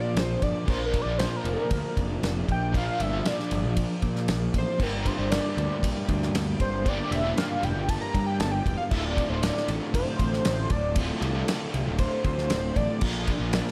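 A mysterious, hypnotic psychedelic rock excerpt in straight 4/4 at 117 BPM opens with a thick, detuned unison synth lead soloing through analog delay over a very quiet, lush string machine, a double-tracked overdriven semi-hollow guitar riff with harmonic tremolo, and a punchy fuzz bass, joined at 0.2 seconds by a dry, up-front 70s drum kit with a fat snare and dark cymbals, all in a small room as the chords move from Bb through Gm and Dm back to Bb.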